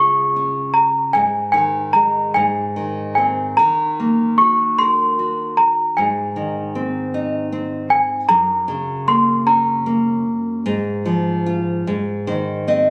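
A phone recording in a club, carrying a moderate stage reverb, captures this short lullaby excerpt at a rubato 50 BPM in 6/8, where a bright, bell-like small celesta sings a sweet, delicate melody up front over a full-bodied, fingerpicked nylon-string guitar that moves through Db, Ab, Ebm and Gb before closing with its own fill from 11.9 to 12.9 seconds, leaving an innocent, sleepy mood.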